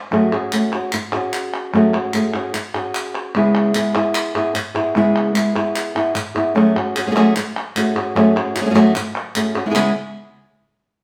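Fiery and dramatic, this brief flamenco excerpt at 150 BPM sets an up-front, thumb-plucked acoustic guitar melody over F#madd9 and C#m7 chords against crisp, compressed, saturated palmas hand claps, both playing together from the start until the claps drop out at 9.8 seconds and the guitar stops at 9.9 seconds, in a live studio room with moderate reverb.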